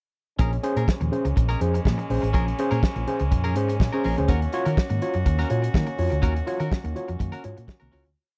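From 0.4 s, a tight soul drum kit with a fat snare drives a four-on-the-floor beat and sixteenth-note hats at 123 BPM in this sultry, driving disco piece in Bb minor, backed by a dark, round hollow-body bass playing a syncopated line with chromatic approach notes, choppy, twangy sixteenth-note clean guitar, a gritty overdriven tine electric piano groove through a combo amp, and a nasal, stopped French horn section holding sustained chords over Bbm7 and Ebm7, set in a small room before the fade-out from 6.2 s.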